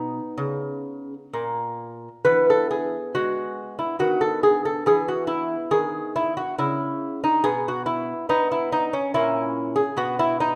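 In a 3/4 at 70 BPM with uneven, rubato beats, this short cut from a longer baroque-style classical dance in E major features a solo acoustic lute, fingerpicked with a delicate touch on gut double strings, some of them octave-doubled, and placed up front in a moderate recital-hall reverb, its flowing, dance-like phrases moving from B through E and B/D# to a pause in the harmony at 7.4 seconds before settling on B5 at 10.0 seconds.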